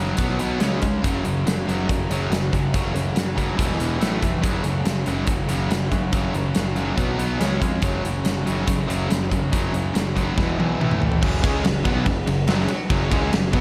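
A straight 4/4 pulse at 142 BPM drives this aggressive hard rock passage in F# minor, cut from a longer piece and tuned a hair low to A4 = 439 Hz. Three picked electric guitars each play a riff over a cycle of B5, C#5, F#5, E5 and A5 power chords, all sitting in the background. One is a double-tracked overdriven guitar with slapback echo, one is a bright high-gain distorted guitar, and one is a warm overdriven semi-hollow guitar wrapped in spring reverb and slapback echo. A picked electric bass underpins them with a direct tone. The acoustic drum kit enters at 0.2 s, standing up front with a dark, smooth big-room character, a punchy kick, a medium-tuned snare, and crashes, hi-hat, ride and toms. A drum fill from 10.4 s carries the band into a new section at 11.2 s, and a lush hall reverb gives the whole mix a big arena feel.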